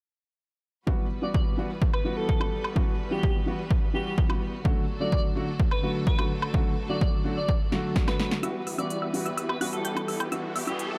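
A punchy, overdriven electronic sound fills a large digital ambience in this anthemic, euphoric festival progressive house cut at 127 BPM in E minor, where a mellow felt-muted upright piano with audible action noise and a smooth symphonic string section pump under the sidechain, moving from Emadd9 to D. An airy, dreamy lead with chorus, vibrato and delay carries the melody over an up-front electronic kick and a big-room drum kit of crisp hats, snare and woodblock, and a drum fill leads into the build-up at 8.4 seconds. There, huge detuned supersaw chords under a filter sweep and a wave-folded unison pluck playing arpeggios arrive, with a riser in the background from 9.5 seconds.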